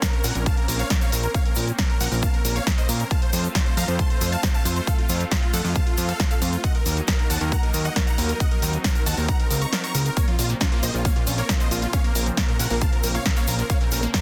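Driving and bittersweet, this uplifting trance excerpt sets huge, detuned supersaw chords carrying the melody over a thick, warbling pad with vintage 12-bit grit, a fat, saturated analog bass, an up-front layered electronic kick that drops out from 9.7 to 10.2 seconds, a punchy analog drum machine's hi-hats and snare, a grainy egg shaker in the background, and a phased unison pluck arpeggio entering at 10.2 seconds, all in a dense, heavily limited mix with little reverb and sidechain pumping on the synths and hats.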